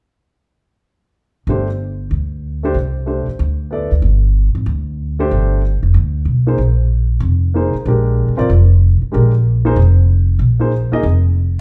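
Modal jazz with an intense, hypnotic swing, cut from a longer piece, where a woody, dark pizzicato upright bass sits up front and a natural, intimate grand piano with audible action noise comps behind it from 1.5 seconds, moving from Gsus4 to Bb7(no3) at 6.6 seconds, as the band plays live in one room with light reverb.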